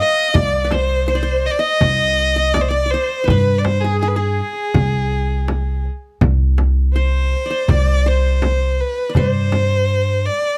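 A bowed violin sits up front with expressive vibrato, portamento and a soft attack, leading this hypnotic, melancholic Arabic maqam ensemble piece, while a bright, plectrum-plucked qanun with triple strings and analog delay plays a second line, a woody pizzicato upright bass on steel strings anchors the low end, and a clay-shell darbuka with natural skin sits in the background beside a dry frame drum, all captured through detailed, close microphones with light reverb.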